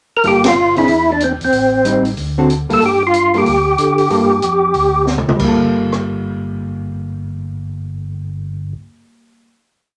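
Smoky and late-night, this short soul jazz organ trio piece swings through a single brief section before settling on a held final chord. The lead tonewheel organ sits up front with a fat, lightly overdriven tone. It has a percussive third-harmonic attack, key click, chorus vibrato and a slow rotary speaker, and plays motif-based call phrases that end at 5.1 seconds. A hollow-body electric guitar, shadowy and clean, is also up front, fingering syncopated comping in three- and four-note chord shapes over Gm9, Cadd9/E, Am7b5, D7 and G7(no3). A second tonewheel organ carries the bass in a two-feel with the same overdrive, chorus vibrato, key click and slow rotary speaker, while an acoustic drum kit in a small room keeps time on the hi-hat with dark cymbals, a high-tuned snare and a boomy kick. After an early band accent and a drum fill, the guitar, bass organ and drums land on a closing Gm9 at 5.4 seconds, with the guitar sounding until 9.5 seconds in a wet, brief studio ambience.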